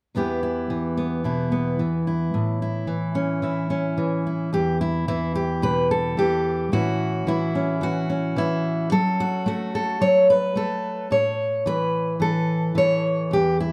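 A fingerpicked steel-string acoustic guitar plays alone, up front and with an auditorium body, carrying this melancholic, reflective folk piece in E dorian at 110 BPM in a straight 4/4. Its part spans E2 to C#5, moving through Em and A before F#m appears around 8.9 seconds, with the second section beginning at 4.5 seconds. Close, detailed microphones and light reverb capture this short cut from a longer piece.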